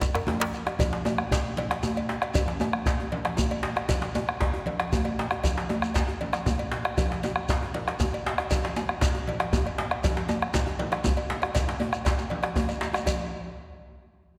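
West African traditional drum ensemble in a festive, earthy 12/8 at 156 BPM, speeding up throughout, opening with a drum fill and a tight, cracking djembe that stops at 0.5 seconds, while a round, up-front bombo, a metallic cowbell, a grainy shekere and a vintage djembe with metal rattles play through and ringing, high-tuned congas enter at 0.3 seconds, all set in a concert hall reverb in this cut from a longer piece.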